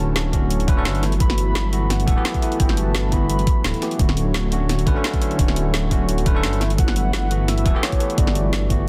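This uplifting liquid drum and bass excerpt at 172 BPM opens with a velvety, vibrato-tinged synth lead carrying the melody in the background, a bell-like tine electric piano accompaniment trailing dub echo, a smooth, warbling analog pad pumping gently against the beat, and a deep, rumbling detuned saw bass sitting up front, all moving between Dmaj7 and Gmaj13. Overdriven drums arrive almost at once, pairing a knocking electronic kick with a woody snare and bright, lightly swung hi-hats. The lead drops out at 3.8 seconds and returns at 6.8 seconds, and the whole passage sits in a digital ambience under a dense, heavily limited modern master.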